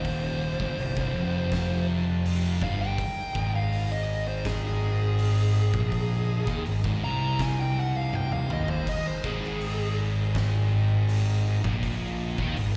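Stoner and doom metal with a heavy, hypnotic mood, cut from a longer piece and heard as if through a venue's PA at a live gig. A growly, up-front fingered bass drives the low end beneath two dark, picked fuzz guitars playing the riff in the background, while an oversized, low-tuned kit with a punchy kick, fat snare and dark cymbals fills a pumping stone room and adds a fill at 8.1 seconds. A fuzz lead guitar solos with slapback and tape echo until 10.0 seconds, a very quiet, shouting tonewheel organ sustains chords through a slow rotary speaker with audible key click, and a bright, double-tracked overdriven guitar joins the riff at 9.2 seconds.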